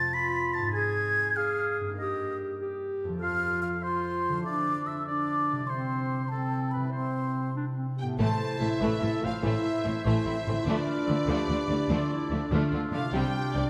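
Triumphant and adventurous, this cinematic passage, cut from a longer piece, moves at 97 BPM in a straight 12/8, starting in C major and turning to A minor at 8.2 s. From the opening, a ringing concert harp spreads arpeggios alongside three woodwind lines: an airy, hollow flute high above, a punchy oboe with a smooth top, and a mellow, vintage-toned clarinet. At 8.0 s a clear, intense violin section takes the melody, lush with vibrato, while a dark, roomy French horn section holds sustained chords in the background. Just after, at 8.2 s, the rich lower strings fill in, with a second violin line and chamber violas in the background, smooth cellos, and distant double basses anchoring the bass. A moderate scoring-stage reverb gives the whole ensemble a spacious, grand setting as the harmony moves from A minor through Dmadd9 to a closing Csus2.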